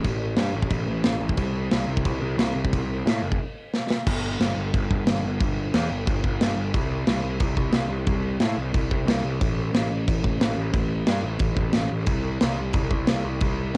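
With little reverb, this home cassette recording captures a short stretch of upbeat, rebellious punk rock at 180 BPM in a straight 4/4. A growly, overdriven picked electric bass with thick fuzz sits up front in its low register, alongside a big acoustic rock kit with a punchy kick, medium-tuned snare and crash cymbal, given a tape-worn color. Both play throughout, and a brief break from 3.4 s ends in a drum fill that leads into a new section at 4.1 s.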